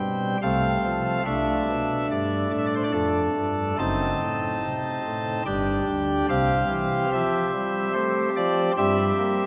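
Bathed in a wet church reverb with a long decay, this reverent, majestic classical chorale for solo pipe organ moves at a rubato 72 BPM in 3/4 and C major, its nasal cornet stop with baroque voicing and a touch of chiff sitting up front as the harmony passes through F#dim7 and settles on C before the short passage breaks off on C7/G at 8.8 seconds.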